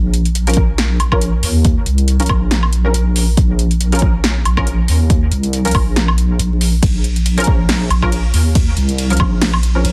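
A dry, dense, heavily limited mix dusted with vinyl crackle frames this cavernous, meditative deep dubstep excerpt in Bb minor, moving at 139 BPM in a swung half-time feel. A dark, detuned wobble bass with chorus sits up front from the opening, joined at 0.1 seconds by an overdriven drum kit of punchy snare, metallic hi-hats, ride cymbal and woodblock, with an overdriven electronic kick landing at 0.6 seconds. Muted, mellow sawtooth chord stabs with a filter pluck, ensemble chorus, 12-bit sampler grit and dub echo decay quietly behind them.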